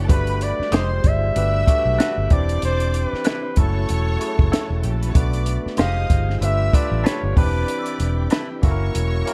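A lightly swung 95 BPM groove in 4/4 carries this short excerpt of lush 1970s-style soul, smooth and cinematic in mood, with the compact cocktail drum kit up front from 0.1 seconds, its punchy kick, high-tuned snare and hi-hat sounding dark with a rolled-off top. Beneath it, a vintage muted fingered electric bass sits low and round, foam-muted and amped. A close-miked flugelhorn carries the melody in a jazz style with scooped notes, while a barky tine electric piano, lightly overdriven through a combo amp, supplies accompaniment and a twangy, compressed clean electric guitar, recorded direct with tube saturation and phaser, plays a riff from 0.7 to 8.5 seconds. Further back, a rich, distant violin section bowed with vibrato adds a second line with slapback echo, a tonewheel organ holds sustained chords through a slow rotary speaker, and a large celesta adds bell-like, delicate ringing texture. 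The harmony moves through lush extended chords such as Gmaj7, Fm9, Cmaj9/E and Bm7 before settling on F#7, all set in a small room reverb with a dark production.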